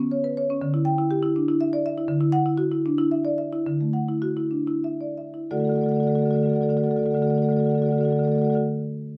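The recording places a woody, percussive marimba up front, its boxy small-room character set inside a moderate, large studio reverb that lends the notes a gentle tail. This is a contemporary classical piece for solo marimba, a short portion cut from a longer work, with a playful, flowing mood and a lilting three-beat metre. The player uses medium-hard mallets on padauk bars, and the instrument ranges from D3 up to G5. The time feel is rubato, and the music slows down from about 1.4 s until a new passage arrives at 5.5 s. The harmony stays close to its home chord, moving through colourful seventh and added-ninth shadings before settling, while the marimba sounds until 8.6 s.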